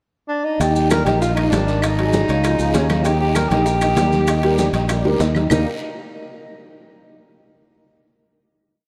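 A dreamy mix soaked in plate reverb gives this short, complete Afro-Cuban jazz piece in Eb major a sophisticated, danceable glow at a brisk 196 BPM in straight 4/4. A breathy alto saxophone opens the pickup at 0.3 s, whispered and intimate with light vibrato and a soft attack, and carries a motif-based melody in period phrases through an analog delay. At 0.6 s the band enters: a baby grand piano plays a montuno in octaves with long sustain, audible action noise and an ensemble chorus, while a growly, bright fingered electric bass sits up front with a tumbao that anticipates the chords. The percussion stays very quiet beneath them, with congas mixing slaps and open strokes, tight high-tuned bongos in steady eighths with hand bell, ringing metal-shell timbales on shell pattern and bell, and raspy guiro and grainy maracas tucked in the background, joined at 0.9 s by woody background claves. 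The claves follow a two-bar time line, and a drum fill leads into the final Ebmaj7 chord at 5.5 s.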